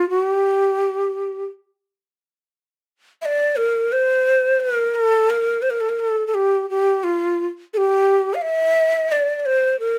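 A breathy ney opens alone and carries the whole 10-second passage in free time, a Turkish solo full of longing and soul. The end-blown reed cane sits close and up front, its tongued notes and expressive vibrato moving between F4 and F5. Light reverb surrounds the playing in this fragment cut from a longer piece.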